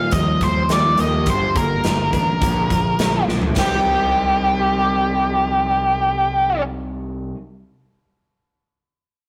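Quiet-loud alternative rock with a dark, angsty mood, heard as a short cut from a longer piece in straight 4/4. An up-front octave-fuzz lead guitar carries the melody with a dark, distorted bite, while a bright, twangy twelve-string electric guitar picks clean, compressed arpeggios in the background. A raw garage guitar adds an overdriven riff behind them, and a growling fingered bass, amped and gritty, anchors the low end. A big acoustic rock kit with punchy kick, medium-tuned snare, toms, hi-hat and brilliant crash cymbals drives the opening, plays a fill at 3.3 seconds and drops out at 3.7 seconds as the harmony moves from Ebadd9, Gmadd9 and Bbadd9 onto Cm. The whole take has a rough rehearsal-room character, with tube saturation and a moderate stone-room reverb.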